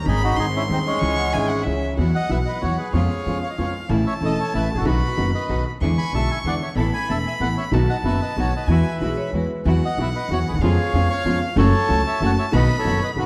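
Dark, reverberant production on a moderate scoring stage frames this nostalgic, passionate tango in E major at 188 BPM in a rubato 3/4, where a reedy, airy bandoneon carries the melody up front over a woody pizzicato upright bass, a boxy upright piano with short sustain in accompaniment, a smooth, close violin second line with light vibrato, focused string-section stabs in the background, and brief metallic, ringing vibraphone touches at 1.2 and 9.0 seconds.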